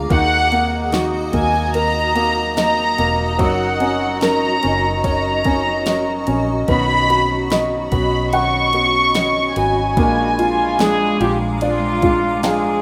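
A felt-muted upright piano with audible action noise opens this tender, heartfelt pop ballad in B major at 73 BPM, joined at once by a blurred, evolving granular pad, a fingerpicked steel-string acoustic guitar playing arpeggios through tape echo, and a round, foam-muted electric bass. From 0.1 seconds a soft-attack studio violin section carries the floating melody up front over a smooth R&B kit with a soft kick, fat snare and ride cymbal, as the harmony moves through D#m, F#6, Badd9 and A#7. At 10.4 seconds a stopped, nasal French horn section with light vibrato adds a second line through tape echo, all set in a rough home-demo mix with light small-room ambience.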